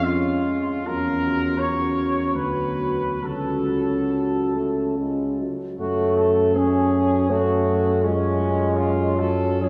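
In a rubato 3/4 at 65-84 BPM, this solemn, melancholic hymn-like classical brass piece in F# minor sets a bright trumpet section with light vibrato on the melody alongside a soft-edged French horn section's second line, with a mellow euphonium and a warm, vintage-toned trombone in accompaniment and a dark, up-front tuba on the bass, all heard from further back in a cathedral reverb that rings for 4.8 seconds, in a short cut from a longer work moving through chords from C#/E# to a closing C#/F# at 8.0 seconds.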